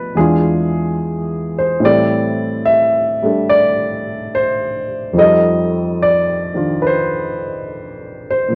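A worn, warbling old cassette tape carries this brief jazz ballad fragment, its pitch drifting and a faint mains hum present alongside a moderate spring reverb. A grand piano plays alone and up front, its tone warm, ranging from E2 up to E5. The tempo is a slow 72 BPM in 4/4 with swung eighth notes, and the key is F major. The harmony moves from E7b9 at 0.2 seconds to Am7 at 1.8 seconds, then settles on F7 at 5.1 seconds. The mood is late-night and tender, like a short, private moment cut from a longer performance.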